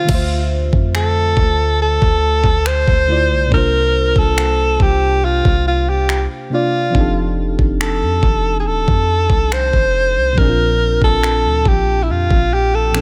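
A dry contemporary R&B excerpt at 70 BPM in D minor feels sensual and longing, built over Dm9, C9sus4, F13 and Bbmaj7. A clear, up-front alto saxophone carries the melody in a jazz style, with vibrato, subtone and digital delay, while a mellow, warbling FM electric piano with chorus supplies soft, round accompaniment. Underneath, a deep, boomy 808-style bass and an electronic drum kit with a knocking kick, finger snaps and crash cymbal come in at 0.1 seconds.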